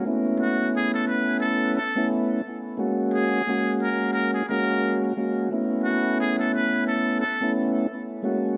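Boom-bap hip-hop with a tough, moody air and a swung groove, cut from a longer piece and bathed in wet spring reverb and a small room's ambience for an echo-heavy mix. A clean tonewheel organ sits up front through a slow rotary speaker, providing accompaniment on sus chords from B9sus4 to G#9sus4 and back. From 0.4 to 7.5 seconds a close-miked trumpet with a metal mute plays a breathy, buzzy, whispered jazz-style solo with light vibrato and a soft attack, both parts trailed by analog delay.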